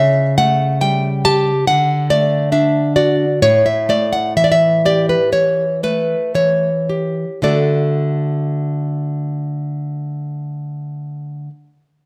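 Tender and serene, this short classical passage in D major, cut from a longer piece, moves in a rubato 4/4 at 52-70 BPM, slowing down through its first 7.5 seconds. A single fingerpicked nylon-string guitar, bright, small and up front, plays accompaniment from 0.0 to 11.5 s over chords moving from A7/C# to D and A7 before settling on D at 7.5 s. A moderate recital-hall reverb surrounds the guitar.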